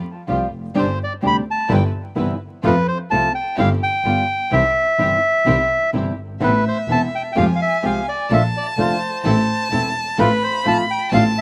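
Dry and crackling like old vinyl, this outdoor-recorded fragment of a sultry, passionate rubato tango puts a reedy, vintage bandoneon melody and a smooth bowed double bass up front, over dark thumb-plucked flamenco guitar with finger squeak and clear, focused string-section stabs in the background, before an expressive violin with vibrato and portamento adds a second line from 6.4 s.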